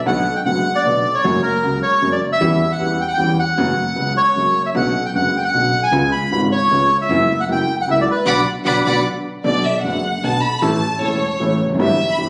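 Captured on a phone in a club-like room, this compressed tango excerpt sits in a large, reverberant space, tense and passionate at 154 BPM in a rubato 3/4 and B harmonic minor. A reedy, close-miked bandoneon carries the melody up front until 9.0 seconds over a smooth, vintage-toned grand piano and a woody, growly pizzicato upright bass in the background, moving through chords such as Bm, F# and C#7. The band hits an accent together at 8.3 seconds as a bright, focused violin section enters with vibrato, and from 9.4 seconds the bowed strings take a solo over the piano and bass.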